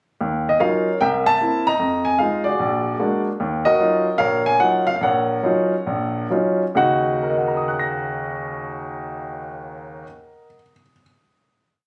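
A swung 4/4 pulse, somewhere between 129 and 151 BPM, carries this short, complete solo jazz piece in Eb minor, and the mood is smoky and moody. A single baby grand piano plays throughout, with a warm, natural tone and long sustain, placed up front. Its melody is built from short motifs in call phrases over a stride bass in the lower hand and close voicings, moving through Ebm9, C7, Fm7 and Bbaug7. From 3.4 seconds the tempo slows, and at 6.8 seconds the piece settles onto a final Ebm7 chord that rings out. The sound has the feel of a phone capturing a performance in a club, with light reverb and compression.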